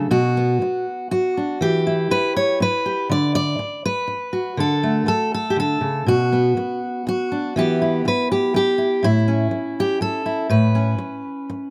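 Folk for solo fingerpicked steel-string acoustic guitar in 3/4, played with a rubato feel and a nostalgic, gentle mood across this short cut from a longer piece. The guitar has a full-bodied dreadnought tone and sits up front, dry and close, recorded outdoors with little reverb. Its harmony moves from Bm to Em and D, then returns through Bm and Em to settle on an Aadd9 at 9.0 seconds.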